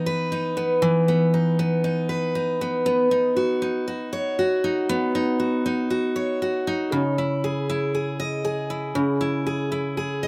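Set in a slow, straight 4/4 at 59 BPM, this tender, heartfelt pop excerpt in E major features a lone picked steel-string acoustic guitar, full-bodied and up front in a dry outdoor setting, moving through E5, Badd9 and C#madd9 chords across its 10.3 seconds.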